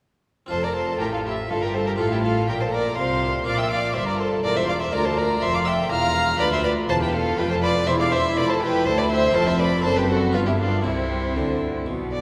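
Festive and lively, this excerpt from a baroque-style concerto movement moves at 122 BPM in a straight 3/4, starting in F major and turning toward C major from 6.4 s. A single solo violin sits up front with a rich, gut-string tone and light vibrato, carrying the melody from E4 to Bb5. Two chamber violin sections in period style play alongside it, one carrying the melody higher up and the other playing a second line, while a dark, nasal viola section fills in accompaniment from the background. A bright, plucked harpsichord in Flemish style adds further accompaniment behind them. The low end comes from a bowed cello section with a smooth top and a double bass section reaching down to E1. Every part plays from 0.5 s to about 12 s, and the whole ensemble sits in a long, wet church reverb that gives the sound the resonance of a large hall.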